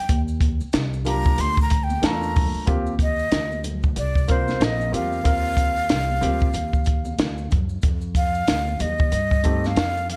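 Jazz-hop with a smooth, relaxed feel at 93 BPM, swinging gently in 4/4 in Eb lydian, built on Ebmaj9, Eb69 and F7sus2 harmonies. A breathy, mellow silver concert flute sits up front with a close-miked, straight, unsteady tone and carries a featured solo through 2.7 seconds. Beneath it, a compact cocktail drum kit gives a dark, punchy small-room groove with a high-tuned snare, a woody pizzicato upright bass anchors the low end, soft distant maracas and congas add a faint bright shimmer, and a warm baby grand piano enters at 1.1 seconds with short-sustained chords, all set in studio reverb.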